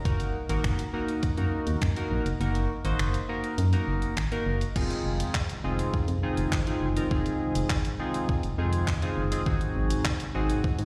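This short cut from a longer dance-pop track sounds like a live gig heard through a venue's PA, with light digital ambience and the bloom of recital hall reverb around it. At 102 BPM in a straight 4/4, the mood is bittersweet yet driving, moving from Fm7 toward Ab7 near the close. A glossy, retro polysynth carries the accompaniment up front, its pulse-wave and sawtooth tones warbling through chorus and pulse-width modulation, with a filter sweep, slapback echo and sidechain pumping. Beneath it, a hollow, dark FM bass with an organ-like, percussive bite pumps along, while a crisp 8-bit drum machine with a tape-warm, thumpy kick lays down hi-hat, handclaps, finger snaps and crash cymbal, its kick falling silent from 2.4 to 4.8 seconds. At 4.8 seconds a smooth pipe organ principal stop joins in the background, holding sustained chords in a romantic voicing that also pumps with the sidechain.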